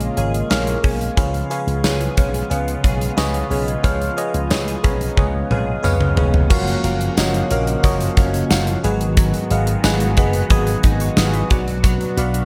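This 1980s-style pop excerpt in F# major moves at a straight 90 BPM in 4/4, with a glossy, uplifting mood. A gated 80s drum kit sits up front in a big, airy room, its punchy kick, medium-tuned snare and bright cymbals giving the groove a polished weight, while a slap bass through an envelope filter adds an amped, electric bite underneath. A glassy FM electric piano with a bell-like attack carries the accompaniment through chorus and phaser, and a swirling, detuned analog pad holds sustained chords in the background as a clean, direct-recorded guitar picks a compressed riff with ensemble chorus and digital delay. A very quiet, jingly tambourine joins at 1.8 seconds, and after an electric piano fill and a drum fill lead into the second section at 6.5 seconds, a mellow synth brass enters with round, dark, detuned stabs. The harmony shifts from A#m7 and C#7 to F#maj7 and G#m7 before landing on Bm at 11.5 seconds.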